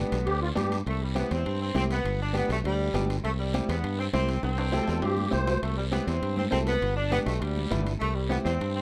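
A growly, bright fingered electric bass sits up front in this joyful, danceable cumbia, driving the short clip at 202 BPM in C major as the harmony moves between G and C. A clear saxophone section carries the melody with light vibrato and a smooth top, playing in a jazz style with plate reverb, while a clean, compressed, picked electric guitar recorded direct adds accompaniment in the same reverb. A reedy musette accordion with shimmering wet tuning and a vintage, band-limited tone slips in a brief second line at 0.3 seconds and again at 4.7 seconds. Raspy guiro joins ringing metal-shell timbales and thick-skinned, high-tuned congas struck with hard hands, the timbales and congas sitting in the background and the congas sounding distant as if in a large room. A drum fill from 4.4 to 5.6 seconds leads into a repeat of the opening section, all captured in a rough home demo mix with light reverb.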